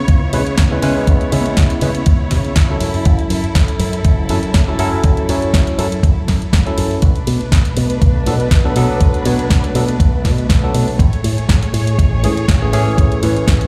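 Groovy and sensual, this nu-disco excerpt rides a 121 BPM pulse in 4/4 and B dorian, with a light 54% swing on the sixteenths. An up-front, thumpy electronic kick with a sampler-style, tape-warm character anchors the groove from 0.1 seconds, joined by a layered, produced house kit of hi-hat, ride cymbal and a punchy snare. A picked electric bass sits prominently beneath, bright and direct through an envelope filter. A barky tine electric piano, clean and colored by a combo amp, comes in at 0.3 seconds with delay and sidechain pumping. A dark, lush symphonic string section bows smooth, expressive sustained chords with vibrato, also pumping with sidechain. The chords move from C#m7 to F#m7, Bm7 and Amaj7, and the mix carries a large studio reverb, as if played on a big sound system in a bare room.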